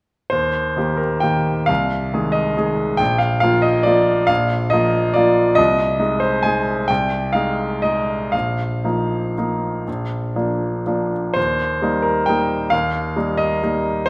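Heard in a wet recital hall with a 1.6-second reverb tail, this playful, elegant classical piano waltz excerpt in Eb major features a solo grand piano, brilliant and intimate, placed up front with audible action noise and long sustain, moving in 3/4 with rubato between 112 and 148 BPM from 0.3 to 14.1 s over chords that pass from Eb through Ab/C, Bb and Bbsus4 back to Eb.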